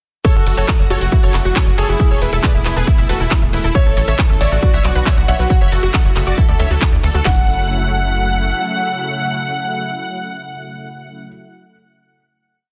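A huge, detuned supersaw riff in thirds and sixths carries this emotional, bittersweet uplifting trance piece at 137 BPM in F# minor, pumping against a heavy four-on-the-floor kick, cracking snare, claps and smooth hats and ride from a tape-toned techno kit that plays until about 7.4 seconds. Beneath it, a tight sequencer bass rolls in sixteenths from 0.4 seconds, a silky string pad with chorus and vibrato holds sustained chords, a smooth grand piano repeats its own riff in the background, and a warbling pluck sequences arpeggios, with dub echo trailing the supersaw, piano and pluck. The chords move from F#m7 through Esus4, A, Bm and Dadd9 before the drop gives way at 7.3 seconds to a final F#m7 chord, in a dense, heavily limited, dry master with some lossy artefacts.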